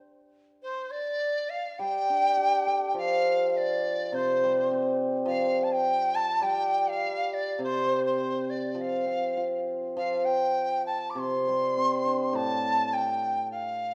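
Chinese traditional chamber music in a graceful, festive spirit, this rubato passage in 4/4 is cut from a longer piece and opens with a large dizi carrying the melody at 0.6 seconds, its bamboo tone airy and buzzing from the membrane, shaded with vibrato and tongued, expressive phrasing. The hammered dulcimer joins at 1.8 seconds as accompaniment, mellow and shimmering with a ringing, hammered sound, and both instruments sit up front. The dizi also carries a distant quality, and a wet recital hall reverb surrounds the ensemble.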